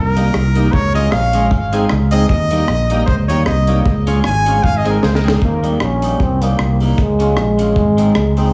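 A lightly swung ska groove in 4/4 drives this cheerful, upbeat fragment: a round, up-front fingered bass and a tight, dark reggae kit with a high-tuned snare sit under a twangy clean guitar with spring reverb and tape echo, while a lightly overdriven tonewheel organ with slow rotary speaker shouts stabs from the background. A brilliant, forceful trumpet with scooped notes and light vibrato carries the melody as a solo from the start, bathed in tape echo and plate reverb, and after a drum fill at 5.0 seconds a breathy, whispered trombone, close and intimate, takes over the tune at 5.4 seconds. The overall sound is heavily compressed and radio-like, set in a moderate studio room.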